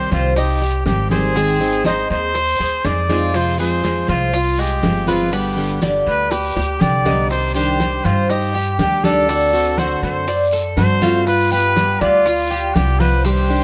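Warm and nostalgic, this excerpt of Cuban son and guajira moves at 121 BPM in a straight 4/4, with a breathy, whispered trumpet up front carrying an intimate, vintage-toned melody with vibrato and a soft attack. Beneath it, a Cuban tres picks metallic arpeggios on its doubled strings, a plugged-in steel-string acoustic guitar adds picked accompaniment with audible finger squeak, and a woody, thumpy upright bass plucks dark gut-string lines over a chord cycle from Cm to G7. Round, low-tuned bongos, thick-skinned congas, a raspy guiro and grainy maracas sit in the background under light reverb, with a drum fill from 6.3 to 7.3 seconds.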